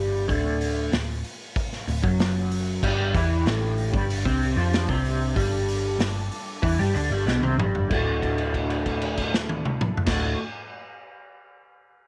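A twangy, slightly broken-up electric guitar riff through a small old amp with a rotary speaker opens this hazy, hypnotic psychedelic rock excerpt at 94 BPM in D mixolydian, alongside a round, dark hollow-body picked bass, with a punchy vintage drum kit and its dark cymbals joining almost at once in a pumping small room, a soft organ-like string pad with phaser and ensemble chorus entering in the background at 2.8 seconds as the harmony moves from D to G5, and a drum fill at 7.3 seconds leading back to D and a held note to the close.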